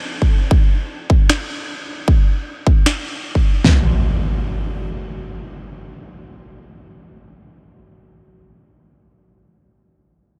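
A light reverb surrounds this short, bittersweet and lush future bass fragment, cut from a longer piece and moving at 153 BPM in 4/4 with a half-time feel. A layered, up-front big-room dance drum kit opens at 0.2 seconds with a punchy kick, a huge snare and toms, and electronic finger snaps with a sharp snare join it from 1.3 seconds. An electronic impact then arrives up front at 3.6 seconds as the second section begins.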